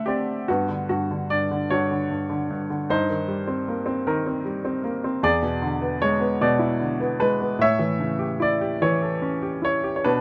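Warm and peaceful, this short cut from a longer lyrical classical piece features a solo baby grand piano. A brief piano fill opens the first 0.5 seconds before the main section unfolds in a lilting 6/8 metre, with uneven beats and free rubato that give the playing a breathing, unhurried quality. The harmony moves from Gmaj7 through Eb6/G and E7 to A7, lending the passage a gently shifting, dreamy colour. The piano spans from low E2 up to F#5 and sounds clear, natural and up front, with a short sustain on each note. A moderate small-room reverb surrounds it, and the top end is softly rounded off, keeping the sound intimate and close until the cut ends at 10.2 seconds.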